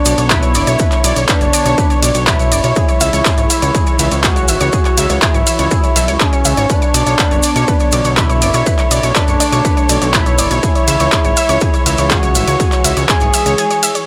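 Built on a straight 4/4 pulse at 122 BPM, this melancholic, dark melodic techno excerpt in B dorian features a punchy analog drum machine's tape-warm handclaps, hi-hat and ride cymbal, joined at 0.3 seconds by a heavy, layered electronic kick that sits up front, with grainy maracas mixed low in the background. A fat, saturated analog bass built from detuned sawtooth and square waves holds the low end between F#1 and C#2, pumping with the sidechain. Above it, a bright, wave-folded unison pluck spins arpeggios from G#4 to E6, its ring-modulated tone trailing dub echoes. A smooth, nasal synth lead with vibrato carries the melody between C#4 and G#4, thickened by chorus and digital delay, while a woody, distant string section sustains chords far behind, roughened by vintage 12-bit sampler grit. The harmony alternates between Bmadd9 and C#m under light reverb, and the bass drops out at 13.6 seconds for a brief break before the cut.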